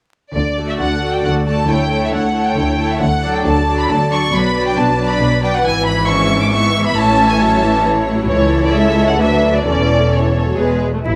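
A rich, smooth violin section carries the spirited melody up front in this quick, lively classical-period movement for string orchestra at 135 BPM in 3/4, moving from D major to A major at 5.6 s, with a clear, intense second violin line, a focused viola accompaniment, and a bass formed by an even cello section and a bright double bass section, all bowed with vibrato, caught by close, detailed microphones in a moderate recital hall with vinyl crackle, cut from a longer piece.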